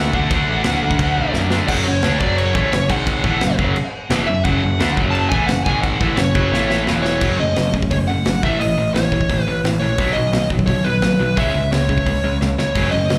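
A smooth, overdriven lead guitar carries the melody in this raw, angry punk rock fragment at 174 BPM in F# minor, its line trailing slapback echo and digital delay over a bright, picked rhythm guitar riff up front, a second compressed riff guitar tucked very quietly beneath, and a growling overdriven bass. A big acoustic rock kit with bright cymbals, a punchy kick and a medium-tuned snare drives the straight 4/4 feel, punctuated by drum fills around 1.3, 6.5 and 12.4 seconds. The harmony shifts to F# dorian at 7.2 seconds, moving through A, B and C#m, and the whole mix sounds like a live gig heard through a club PA with small-room reverb.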